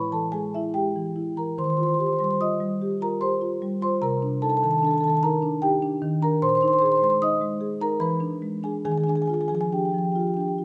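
A solo marimba played with soft mallets carries this playful, warm contemporary classical piece, its woody, round, mellow tone sitting up front and ranging from A2 to Eb6 over a loose, rubato 3/4 at 74 BPM, tuned to A4 = 441 Hz, as rich chords such as Amaj7(no3), Cm9 and Ebmaj9 ring into a wet recital hall reverb in this short passage cut from a longer work.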